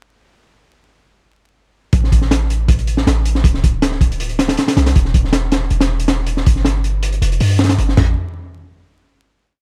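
Dry, with vinyl crackle over the whole track, this short, dark and raw drum and bass piece, with a jungle edge, runs at 159 BPM in a straight 4/4. At 1.9 seconds the drop arrives: a crunchy, saturated breakbeat kit sits up front, heavily chopped, with a punchy kick, a high-tuned snare, hi-hat, toms and crash cymbal, all gritty with a rolled-off top. Beneath it, a deep, boomy 808-style sine bass with fast attack and decaying tone plays long gliding notes from D1 to G2, before the piece ends on a final note from 8.0 to 9.5 seconds.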